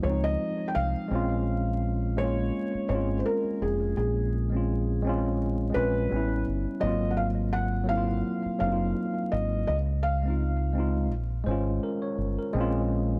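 A swung 84 BPM groove in 4/4 sets this hazy, nostalgic lo-fi hip hop fragment in Bb minor, tuned to A4 = 437 Hz, where a dark, round, up-front fingered electric bass anchors worn, slightly out-of-tune tine electric piano chords heard through built-in speakers with light overdrive, while a soft, felt-muted upright piano with audible action noise and analog delay carries the intimate, mellow melody until 11.1 seconds over chords moving from Dbmaj9 through Bbm7, A9 and Ab13, all wrapped in light reverb and vinyl crackle.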